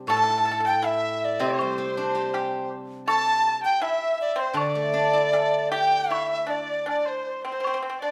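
Set in a moderate recital-hall reverb, this festive, pastoral Chinese chamber piece in 2/4, cut from a longer work, moves with a rubato feel, led by a reedy, buzzing large dizi that sits up front with vibrato and a crisp attack. A smooth bowed erhu with portamento and a dry, percussive fingerpicked pipa carry second lines beneath it, while a silvery, ringing steel-string zither accompanies until 6.9 s. A woodblock plays in the background as the music shifts into a new section at 6.1 s.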